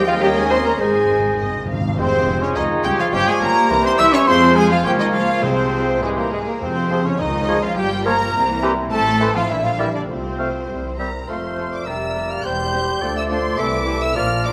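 A restless, dramatic classical-period orchestral movement in quick 2/4 at 104 BPM, cut from a longer piece, begins in F minor and brightens to F major at 8.9 s as a rich, lush violin section carries the melody over clear oboe, mellow clarinet and a hollow, distant flute, with a quieter second violin section, smooth violas, a warm bassoon, clear French horn chords, dark woody cellos and warm double basses beneath, soft round timpani first entering with a fill at 0.8 s, and a warm trumpet adding stabs from 2.0 s, all set in a wet recital-hall reverb.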